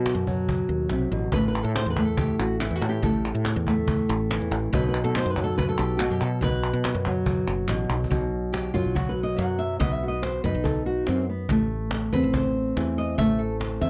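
A straight 4/4 pulse at 142 BPM drives this passionate, fiery flamenco passage in B phrygian dominant, where an up-front, fingerpicked acoustic flamenco guitar carries the melody over a dark, growly woody fretless electric bass and a snappy cajon with snares, crisp vintage palmas hand claps join from 1.6 s to 8.1 s, and after a drum fill at 7.9 s the guitar moves into a solo, all captured in a dry, close 1970s-style studio sound with light reverb.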